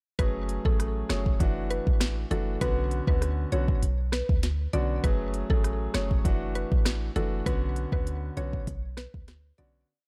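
A syncopated 99 BPM dancehall beat, with a deep kick answered by a sharp snare layered with rim over smooth hats on an up-front, tape-toned electronic afro-pop kit, drives this bouncy, hypnotic piece: a boomy, clean sine 808 bass rides low, a clear, natural grand piano adds syncopated chords, a woody, round FM mallet-like pluck with chorus and digital delay carries the hook, soft, low-tuned bongos join in the background at 1.1 s, and the dark production fades out from 7.5 s.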